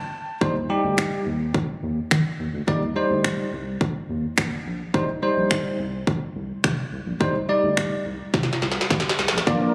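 A bell-like tine electric piano sits up front in this upbeat, euphoric dance-pop excerpt, opening with a short fill and playing bright, clean accompaniment that breathes with sidechain pumping. From 0.4 seconds a round analog bass lays down a deep, dark, evolving foundation that pumps as well, while an industrial drum kit drives a straight 4/4 pulse with a heavy kick, clanging snare and finger snaps, its tape-warm sound re-recorded in a large room. The drums play a fill toward the close of the passage, leading into a change at 9.5 seconds. There a mellow, vintage organ-like ensemble string pad enters with sustained chords, phaser and ensemble chorus, joined by a very quiet detuned pluck playing arpeggios and a barely audible riser. The whole excerpt has the feel of a phone recording made in the room, with a light club reverb around it.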